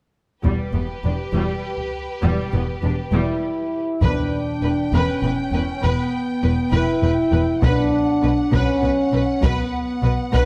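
Opening at 0.4 s with bowed strings and a close, dry taiko ensemble struck with hard sticks, this epic, heroic cinematic orchestral excerpt in E dorian moves at 67 BPM in 6/8, as a focused violin melody with a smooth top rides over lush violas, a distant second violin line, and expressive cellos with even double basses, before an up-front French horn section enters with sustained chords at 3.1 s and round, soft-mallet timpani sound in brief passages at 4.0 s and 7.6 s over a harmony of Em, Em7 and Bm, set in light reverb with close, detailed miking.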